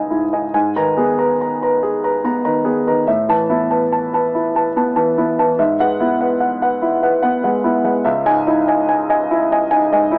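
This short excerpt sounds like a home cassette recording with the tone of AM radio, wrapped in a moderate spring reverb that lingers for 2.4 seconds. It is a piece of neoclassical minimalist piano in G# minor, melancholic and reflective, moving at 72 BPM in a flexible, rubato 3/4. A concert grand piano plays alone from 0.0 to 10.2 seconds, its tone warm and natural with a deep bass, and it sits up front. Its range stretches from C#2 up to A#5. The harmony drifts through C#madd9, G#madd9, Asus2 and Eadd9/G# before settling back on C#madd9 at 8.1 seconds, a brief cut from a longer piece.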